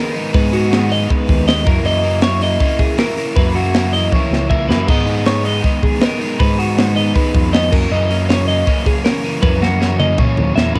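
Intricate and wistful, this math rock and midwest emo excerpt moves at 158 BPM in a straight 4/4, shifting between G#m7 and F#7sus4 harmonies. A bright, twangy twelve-string electric guitar plays clean picked arpeggios over a double-tracked overdriven guitar riff, while a growling fingered bass with overdrive joins at 0.3 seconds. The crisp fusion drum kit sits up front with a punchy kick and an airy studio-room sound, adding drum fills at 4.1 and 9.4 seconds, and the excerpt carries light reverb and the texture of a home cassette recording.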